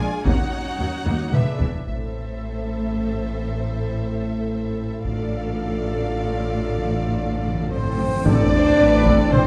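A dark production bathed in wet scoring-stage reverb carries this relentless, dramatic excerpt of an epic orchestral film score at 113 BPM in 3/4, where clear, focused violins sing the vibrato melody over rich second violins, smooth distant violas, roomy French horn chords, and cellos with intense double basses anchoring the bass. A distant taiko ensemble struck with hard sticks drives the music from 0.3 seconds, and very quiet timpani add a fill from 5.1 seconds. Near the close, warm trumpet stabs, a barely audible hollow flute and a huge, bright cymbal swell with a sub drop build to an impact on A minor at 8.3 seconds, where mellow trombone chords and a faint tam-tam join.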